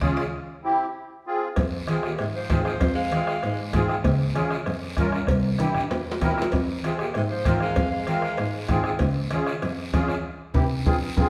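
Up front, a reedy musette accordion with a shimmering, vintage, band-limited tone carries the accompaniment in this passionate, danceable cumbia in F minor at 194 BPM, cut from a longer piece. Beneath it, a single dark bowed cello holds the bass, expressive and smooth on top, with vibrato and portamento. The percussion pairs a soft-beater bombo and a raspy guiro with close, dry, ringing timbales and cowbell, while low-tuned, thin-skinned congas sit bright in the background. At 1.9 s a warm clarinet enters with the melody, distant and roomy in a classical solo style, joined by a clear tenor saxophone with vibrato playing a second line in the background, and both return around 6.9 s. The harmony moves through C, Fm and Db, opening on a break and closing with a drum fill and band accent at 10.2 s, all heard as a band playing live in one room with wet, large studio reverb.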